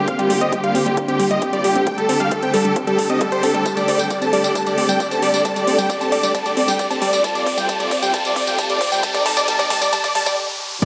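A huge, euphoric supersaw lead carries the melody up front from the start, over intense, vibrato-rich bowed strings holding sustained chords and a full-bodied, detuned pluck spinning arpeggios, with sidechain pumping and tape echo on the lead and pluck. In this emotional, bittersweet uplifting trance build-up cut from a longer piece, a filter sweep runs throughout, and a background riser enters at 2.4 seconds. A punchy, tape-warm electronic kick and a house kit with metallic hats, tambourine and crash come in at 0.1 seconds and play a drum fill from 3.7 seconds. Everything halts for a brief stop at 10.4 seconds, all of it set in a lush digital hall reverb.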